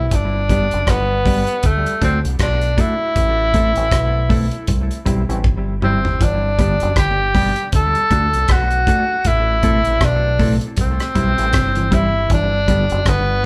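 A relaxed roots reggae groove at 79 BPM in 4/4, with a gentle 16th-note swing, sits in G major and moves through a G, D, Am, C cycle that carries a laid-back, uplifting mood through this short section cut from a longer piece. A damped 70s drum kit sits up front, dry and tight in the kick with a rolled-off top, working hi-hat, rim click and toms, and it plays a fill from 5.4 to 6.2 seconds. Beneath it, a deep dub fingered electric bass gives a dark, round, punchy low end, while a mellow electric guitar, clean and compressed, adds accompaniment treated with spring reverb and tape echo. At 6.2 seconds a second electric guitar, slightly broken-up and picked, enters in the background with arpeggios colored by tremolo and tape echo. Over it all, a breathy tenor saxophone carries the melody up front with a soft attack, light vibrato and scooped notes, sounding whispered and intimate, while the band plays live in one room with a moderate large studio reverb.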